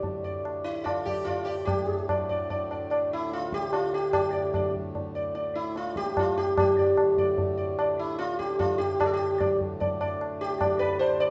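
A hand-pumped harmonium drone and low-tuned tabla open this Hindustani classical excerpt together, with the plectrum-plucked sitar joining at 0.2 seconds. The mood is introspective and meditative, set in raga Bageshri on D with a tuning of A4 = 441 Hz, moving in 3/4 at 148 BPM with a straight feel that speeds up throughout. The sitar sits up front, its buzzing, shimmering tone ringing with sympathetic strings as it carries the melody between E4 and D5. Beneath it, the harmonium holds a reedy, nasal, breathing drone low in the mix, while the acoustic tabla has a short ring and a small-room character. The music shifts into a new section at 1.7 seconds, and a moderate recital hall reverb gives the sound a natural sense of space.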